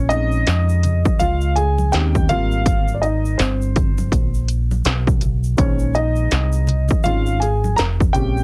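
A dark, mellow upright piano opens this short jazz-hop fragment, its woody, slightly detuned voice carrying a solo across the full 8.4 seconds over chords moving from Bbm11 to Abmaj9 and back in Bb dorian. A deep dub fingered electric bass sounds from the start, round and direct, sitting up front in its low register. From 0.1 seconds an industrial drum kit joins with a heavy kick, clanging snare and crisp hi-hats, its electronic, produced sound roughened by vintage 12-bit sampler grit. Tube shaker and congas played with hard hands add close, dry acoustic texture in the background. At 82 BPM in 4/4 with a 60% swing on the sixteenths, the groove feels nocturnal and cool. The mix is dry, with little reverb, and has a heavily compressed, radio-like sound.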